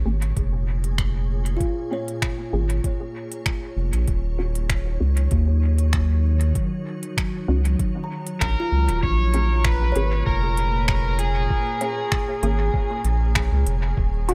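A round, dark analog bass sits up front in this deep, hazy ambient dub excerpt at 97 BPM, moving from Bbm7 to Ebm7 beneath a calm, organ-like pad, a muted sawtooth chord stab with phaser, cassette-tape coloring and dub echo under a filter sweep for the first 9 seconds, a muffled, thumpy kick, crisp overdriven finger snaps and hi-hats, a woody kalimba ringing out arpeggios from 1.6 seconds, and a bright overdriven slide guitar melody entering at 8.4 seconds, all set in an echo-heavy mix with little reverb.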